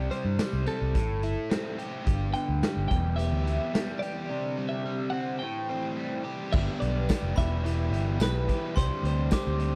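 A dry, close recording with a 1970s studio feel carries this carefree, upbeat indie rock passage, cut from a longer piece. A clean, twangy twelve-string electric guitar with slapback echo plays the melody over a double-tracked, overdriven guitar riff, a round, amped fingered bass up front, and a gritty, saturated garage drum kit with a punchy kick, medium-tuned snare, hi-hat, crash and tambourine, all moving through a chord progression of C5, Am7, G, Em and Csus2 with a break along the way. A soft, detuned sawtooth pad with chorus enters at 2.1 seconds, a sparkling glockenspiel played with brass mallets adds a second line from 6.5 seconds, and a jingly tambourine joins in the background at 7.1 seconds.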